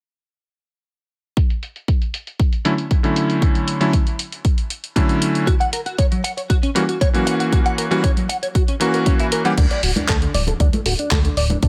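A punchy, up-front electronic kick and a gritty, sampler-style soul kit with handclaps, hi-hat and crash, its hats, cymbals and snare dulled by a low-pass filter, lay down a straight 4/4 nu-disco groove at 117 BPM in D major that feels feel-good and groovy. A clangy, vintage electric grand piano with dub echo carries Dmaj9 harmony from 2.6 seconds, and a clean, direct-recorded electric guitar riff with analog chorus joins at 5.5 seconds as the chord moves to F#7. At 9.6 seconds the harmony falls away and a glossy, nasal pulse-wave synth bass enters, joined by soft-handed congas and bongos ringing in a small room, before this cut from a longer piece ends.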